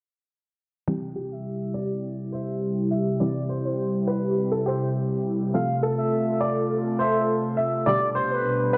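A summery, euphoric pop excerpt at 103 BPM in C major, where an airy, breathy pad holds sustained chords under a hollow, nasal square pluck, both entering at 0.9 s with a filter sweep running throughout as the harmony moves from C to F at 5.5 s and G at 7.9 s. A smooth, expressive portamento lead with vibrato and slapback echo carries the melody, joined at 1.2 s by a clear, polished concert grand piano also playing melody. A wet echo-chamber reverb gives the whole a digital ambience.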